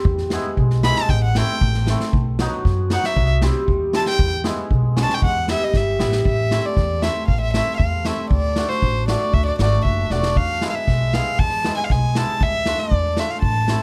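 Close, detailed microphones and a light reverb give this festive yet bittersweet klezmer excerpt an intimate, polished sound. At 117 BPM in a straight 2/4, it opens in E harmonic minor, with a hammered, shimmering cimbalom ringing out chords over a woody, dark pizzicato upright bass. A street-band drum kit with a boomy kick and medium-tuned snare sits in an airy big room, and a drum fill around 5.7 seconds leads into a move to A harmonic minor at 6.3 seconds. Up front from 0.8 seconds, a single violin carries the melody in a high register, played sul tasto with a soft attack and a pure, floating, warm bowed tone. The harmony passes through chords such as Am, D, E and Dm in the second half, with a further drum fill before the excerpt cuts off.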